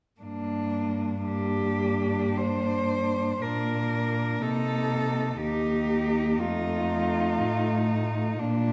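A bowed cello carries the yearning melody up front, entering at 1.3 s and singing in its upper range with expressive vibrato and portamento. Beneath it, three more cellos play from 0.2 s: an up-front second line, a soft-attacked accompaniment and a deep bass line, all rich-toned and played with the same vibrato and sliding expression. This melancholic classical piece for cello ensemble sits in G minor at a slow, rubato 53-61 BPM in 4/4, moving from Gm to Cm7 to F7 in a reverberant recital hall, and it is cut from a longer work.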